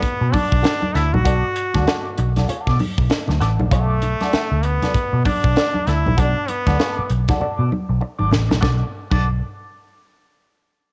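Swung sixteenths drive this cool, funky groove in 4/4, cut from a longer piece. A crisp fusion drum kit with a high-tuned snare and punchy kick, along with a dark, round, foam-muted picked bass carrying tube saturation, sits up front, while bright, hard-handed congas stay in the background. A brilliant, forceful trombone with vibrato and scooped notes carries the melody until 7.1 seconds over a clean, twangy electric guitar colored by wah and tremolo, and a drum fill from 7.4 seconds leads into a new section at 8.6 seconds, all heard through the light studio reverb of a home cassette recording.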